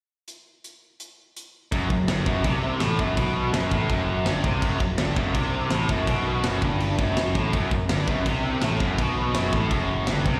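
Heavy metal at a relentless 165 BPM in straight 4/4, this short excerpt from a longer live performance opens with a tight, mid-forward drum kit of crash, hi-hat, kick and snare playing alone until 1.7 seconds, when a bright, double-tracked distorted guitar riff with slapback echo and a growly, fuzz-laden picked electric bass join in on F#m, the whole gig heard through the venue's PA with a light recital-hall reverb.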